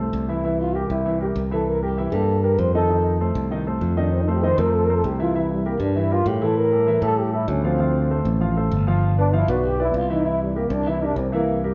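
A breathy trombone carries the melody through this lively, sophisticated jazz excerpt at 196 BPM in C mixolydian, its mellow, whispered tone and light vibrato sitting intimately up front as it solos from 0.3 seconds to the end. A dark grand piano supplies accompaniment while a bright, growly fingered electric bass adds punch beneath, moving through C7, F7, Dm7 and G7 changes. A large studio reverb places the whole group further back in the room.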